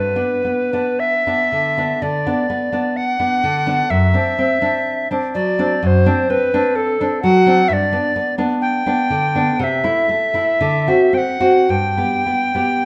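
A moderate recital-hall reverb gives this brief excerpt of a romantic duo a gentle, open bloom, with both players sitting up front. In a serene G major at a slow, rubato 51-66 BPM in 4/4, the tenor recorder carries the melody with a woody, breathy tone, crisp chiffed attacks and a touch of vibrato, while the nylon-string guitar accompanies in a warm, fingerpicked classical style throughout the 12.9 seconds. The harmony moves from a rootless G through D7/F# back to G, then passes through Am/C and D7 to settle on G at 11.7 seconds.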